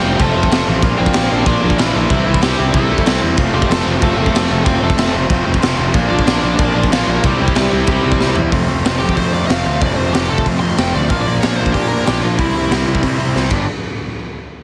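Punk rock with an upbeat, energetic drive in straight 4/4, cut from a longer piece. A biting lead guitar carries the melody over two overdriven rhythm guitars playing riffs, one a bright, hollow-body semi-hollow and the other a warm electric sitting in the background. A fuzz-drenched picked bass adds a growly low end, while a raw garage drum kit, entering at 0.2 seconds, comes through with a punchy kick and gritty, saturated crashes and hi-hats that sound up front in a bright stone room. The chords cycle through F, Bb and C, and after a drum fill the lead guitar breaks into a solo at 8.5 seconds, with the harmony moving to G just before the close at 13.7 seconds. The overall mix is heavily compressed with a dry, radio-like punch.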